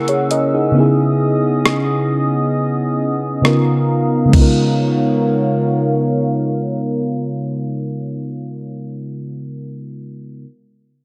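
A round, mellow FM electric piano and a hollow, flute-like pad open this moody, late-night contemporary R&B excerpt at 67 BPM, moving through F#9/C#, C#m9 and C#13 under a filter sweep that runs until 4.3 seconds. A clean 12-bit drum machine with a thumpy kick, hi-hat, rim click and crash sits up front beside the chorused piano, then drops out at 4.5 seconds. The airy pad ends at 8.7 seconds, leaving the piano alone in a dark, lightly reverberant production.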